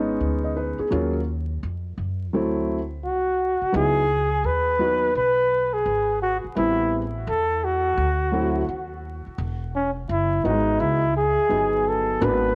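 The recording has the worn, lo-fi character of a home cassette, with vinyl crackle running beneath a short, wet studio reverb. This cool jazz-hop fragment, cut from a longer piece, rides a swung hip hop groove in 4/4. A dark, mellow baby grand piano sits up front from the start, accompanying through rich extended chords such as a rootless Amaj9#11, D#m9 and C#9sus4, its tone softened by tape and plate reverb. Beneath it, a woody pizzicato upright bass with steel strings anchors the low end. At 3.0 s a breathy flugelhorn enters up front, intimate and whispered, with soft attacks and gentle vibrato, colored by tape, plate reverb and analog delay. From 9.4 s the horn takes a jazz-style solo as the harmony arrives on Emaj9, and the bass carries on to 12.6 s.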